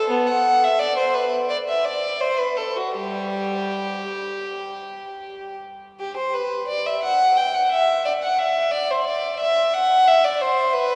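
Bathed in a long, wet cathedral reverb that decays over 4.5 seconds alongside a touch of small-room ambience, this radiant, serene passage from a longer baroque-style suite movement for unaccompanied violin features a single up-front player drawing a warm, reedy, gut-string tone in period style, bowing freely with rubato across G3 to G5 in G major at roughly 76-91 BPM in 4/4, moving into a new section at 6.0 seconds before the excerpt cuts off at 11.0 seconds.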